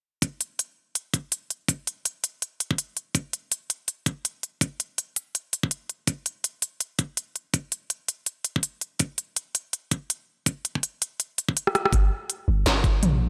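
A knocking electronic kick, high-pass filtered, and an up-front industrial kit of clanging snare, crisp hi-hats, rim clicks and toms open this dark, cinematic half-time drum and bass at 164 BPM in G minor, swung on the sixteenths and cut from a longer piece. The tape-warm kit sits in light digital reverb, and a drum fill at 11.7 seconds leads into a build-up. There, at 11.9 seconds, a long, deep 808-style sine bass with a fast attack enters between G1 and Bb1, decaying in a mellow tone.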